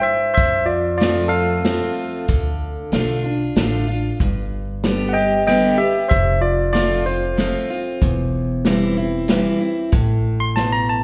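A straight 3/4 feel at 94 BPM sets a down-home, heartfelt honky-tonk and classic country mood in this short section cut from a longer piece. The barky tine electric piano carries the melody as a solo from 0.0 s, sitting up front with a bright, lightly overdriven bite from its combo amp. A picked steel-string acoustic guitar, also up front, fills in the accompaniment with fresh strings and a full-bodied auditorium sound. At 0.4 s a pizzicato upright bass with gut strings adds a woody, thumpy low end, and an acoustic drum kit joins with hi-hat, a tight kick and a medium-tuned snare played with bundle sticks, its tone dark, smooth and rolled off at the top. The harmony moves from F through Dm and G, back to F, then C/E before resting on Asus2, all inside a moderate church or concert-hall reverb with a mellow, softened top end.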